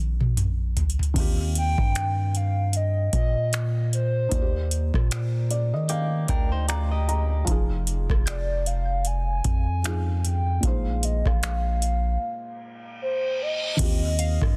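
A felt-muted upright piano opens this moody, sensual contemporary R&B excerpt, its dark, intimate tone carrying audible action noise, while a booming analog drum machine rolls through a short fill and a long, sine-like 808-style bass sits deep and up front. At 1.6 seconds a hollow, woody synth lead resembling a clarinet takes the melody, its soft attack and vibrato colored by chorus, phaser and tape echo. The drums keep a relaxed swung groove with a deep kick, metallic hats, finger snaps and rim clicks, their overdriven sound re-recorded in a small room and soft clipping on the snare. A clean, direct-recorded electric guitar adds brief picked arpeggios with tape echo around the piano's fill, and from 8.3 seconds a crystalline wavetable pluck glints in the background. A break near the end brings a reverse cymbal, all within a dry, dense and heavily limited modern mix over lush extended chords.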